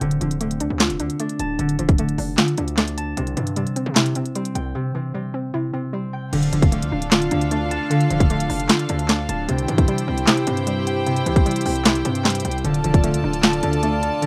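A half-time trap groove at 152 BPM in 4/4 drives this brooding, menacing hip hop excerpt in D minor, with the trap drum kit sitting up front: a hard-clipped kick, sharp snare, crisp hats, handclaps and crash cymbal, all roughened by vintage 12-bit sampler grit. Underneath, a distorted 808-style bass rumbles heavy and saturated, its sine tone layered with noise and hitting with a fast attack before decaying. A hollow, bouncy square-wave pluck, detuned and thickened with chorus and a low-pass filter, carries the accompaniment while a fingerpicked concert harp rings out arpeggios through a low-pass filter and delay. After a brief break at 4.7 seconds, a studio string section enters at 6.3 seconds with soft-attack, sul tasto chords that float above the groove as the harmony keeps alternating between D minor and C. The whole thing has the light reverb and rough, homemade feel of a demo mix.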